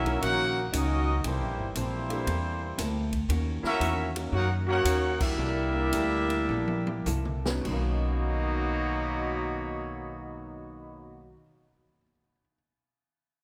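Big band swing with a brassy, energetic mood, cut from a longer piece, where a mellow, roomy trumpet section carries the melody over a clear, tight trombone section's second line, a woody pizzicato upright bass up front, a dark, clean hollow-body jazz guitar in the background, a very quiet baby grand piano and an acoustic drum kit with a boomy kick, set in light reverb, as the band slows down, hits an accent at 5.1 s and the drums play a fill before stopping at 7.8 s, with the piano lingering to 12.5 s.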